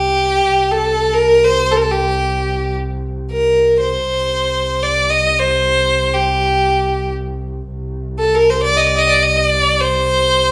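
A close, clear bowed violin sings a longing melody with vibrato between G4 and Eb5, up front over a focused bowed double bass drone on C2 with its own vibrato, in this melancholic 10.5-second excerpt of an Arabic maqam ensemble in free time and C minor, tuned to A4 = 439 Hz and played live in one room with a wet large-studio reverb.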